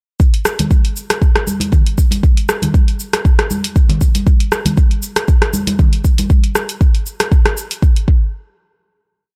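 A four-on-the-floor deep kick sits up front under programmed closed hats, cabasa and rim clicks from a tape-warm deep house kit, swung lightly on the sixteenths in this short, earthy house piece. Live-room congas, hit with hard hands in interlocking high and low parts, play from 0.6 to 6.3 seconds. The whole groove has a dry, gritty hardware character with transformer saturation and closes on a final hit at 8.3 seconds.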